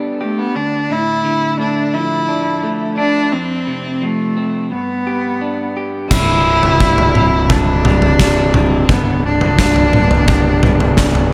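A light reverb and small room ambience frame this hopeful, euphoric post-rock passage in C major at 86 BPM, cut from a longer piece. Slightly broken-up, compressed electric guitar picks arpeggios through a small old amp with analog delay from 0.0 s, and a smooth, bowed cello sings the melody up front with vibrato and its own analog delay from 0.2 s. At 6.1 s, as the chords settle onto Cadd9 and G/C, a growly fuzz bass enters in the background alongside a big, up-front rock drum kit with a punchy kick, a medium-tuned snare, toms and crash cymbal in a bright stone room.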